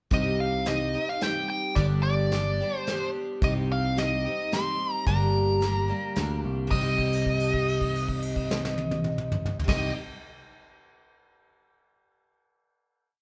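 Folk rock with a heartland rock lean, this short, complete piece moves in a steady three-beat sway and carries a reflective, dusty mood. A nasal, overdriven lead guitar with a parked wah sings a motif-based melody of song-like phrases up front. Beside it, a shimmering, octave-doubled twelve-string acoustic guitar rings out open chord shapes in a folk strum, and a punchy, direct electric bass plays a dotted figure underneath. A soft brush drum kit with dark cymbals, a medium-tuned snare and a tight kick keeps an airy, polished 3/4 groove. The band sounds as if it plays live together in one large studio, with a moderate reverb around it. After a brief verse that shifts between minor and major chords, everything settles onto a final chord at 6.7 seconds, and a held note rings until 9.7 seconds.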